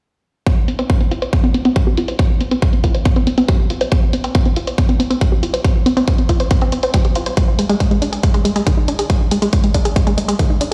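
A straight 4/4 pulse at 139 BPM drives this uplifting trance passage in C minor, its mood both driving and bittersweet. An overdriven, layered electronic kick sits up front with a punchy thump from 0.5 to 10.5 seconds, while a dry, analog-toned electronic hi-hat ticks quietly beneath a low-pass filter until 10.7 seconds. Over them, a bright unison pluck spells out arpeggios between Eb3 and C5, its detuned sawtooth voices carrying a lush, warbling, vintage character with a fast attack, short decay and a noise layer. That pluck pumps with sidechain and trails tape echo, and a filter sweep runs across it for the whole stretch. The mix sounds as though played on a big sound system in a bare room, with light digital ambience and large studio reverb, and it is cut from a longer piece.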